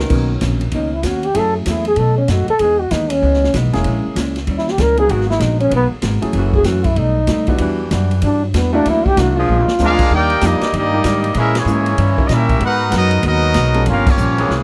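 This energetic, brassy big band swing excerpt in B major moves at 192 BPM in 4/4, opening with upright bass, drum kit, hollow-body jazz guitar, upright piano and a brief mellow saxophone chord before a vibrato-laden trombone takes the lead at 0.7 seconds with scooped notes and a roomy character. Beneath the solo, the pizzicato upright bass sits up front with a woody, thumpy tone, while the drum kit drives the swing on ride, hi-hat, snare, boomy kick and crash. Piano and the dark, clean picked guitar comp quietly in the background, and the saxophone section returns from 5.1 seconds with soft-attack sustained chords. After a drum fill, the clear trumpet section takes up the melody at 9.8 seconds, supported by a tight, vintage trombone section on a second line, with band accents punctuating the passage as the harmony shifts through rich extended and altered chords. The recording is dry and close, with a 1970s studio feel.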